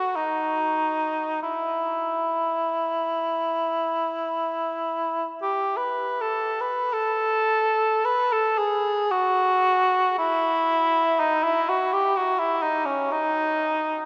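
Lyrical and serene, this short classical passage for unaccompanied cor anglais moves freely and expressively in 4/4, its rubato pulse drifting between 33 and 64 BPM. The mellow cor anglais sits up front, singing with light vibrato from C#4 to B4. A cathedral's long, wet reverb, lingering about 6.1 seconds, surrounds the lone line through both sections as the phrasing turns to new material at 6.9 seconds, and the passage is cut from a longer piece at 14.1 seconds.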